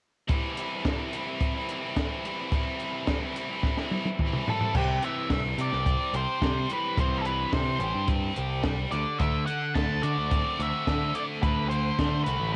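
Indie rock with a restless, cool mood, cut from a longer piece and caught as a home cassette recording in a small room: a biting overdriven guitar riff and a compact cocktail drum kit with a high-tuned snare, punchy kick and rolled-off top open together, a drum fill at 3.6 s leads in a dark octave-fuzz lead guitar melody with tape echo at 4.5 s, and a growling, bright picked electric bass with overdrive joins at 4.7 s, before the harmony moves from C to D7 at 8.9 s.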